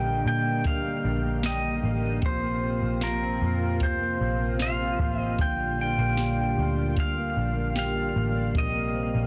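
A soft vintage rhythm box with a deep kick, crisp snare and metallic hats sets a straight, unhurried dream pop pulse from 0.6 s to 8.7 s, under a round, punchy, foam-muted picked bass. A dark, clean electric guitar plays fingered arpeggios through chorus and delay, while a tight brass section holds sustained chords with light vibrato and an up-front pedal steel carries the melody with fingerpicks, slide, volume swells and delay. The chords drift from Ebmaj7/Bb through Bbsus2 and Gm7/Bb to Cm7/Bb in a dreamy, ethereal mood, set in light digital ambience with a dense, heavily limited master, in this short passage cut from a longer piece.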